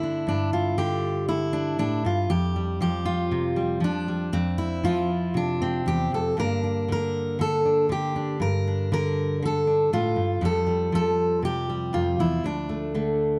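A lone fingerpicked steel-string acoustic guitar opens this brief folk excerpt, its full-bodied jumbo tone placed up front and close to the ear. The mood is melancholic and intimate, with the playing moving freely in a rubato feel around 118 BPM in 4/4. The harmony drifts from G5 to Fsus2 at 2.3 seconds, then darkens into Gmadd9 at 6.4 seconds before returning to Fsus2 and settling on D5. The guitar ranges from a low D2 up to Bb4, and finger squeaks on the strings add a human, in-the-room quality. Light reverb and a dark, warm production wrap the instrument softly through the 13.4 seconds, as if lifted from a longer piece.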